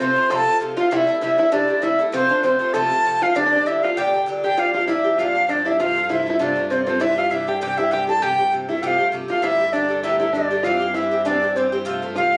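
A bright, reedy wooden flute leads from the start of this Celtic reel, carrying the melody up front with a close, airy tone, tongued notes and touches of vibrato. An open-back banjo plays a plunky, twangy second line beneath it, fingerpicked and percussive, while an Irish bouzouki fills out the accompaniment with picked, metallic double strings. The tune drives along at 197 BPM in 4/4 with a light swing, its G dorian colouring giving a dark yet lively mood. At 4.6 seconds, as the music moves into its second section, a single cello enters low in the mix, holding a soft-attacked drone on G with an intimate, bowed sul tasto sound and light vibrato. The harmony moves through chords such as F, Am7, Gm and Cadd9, and the whole excerpt, cut from a longer piece, has the compressed feel of a phone recording made in the room, with club reverb.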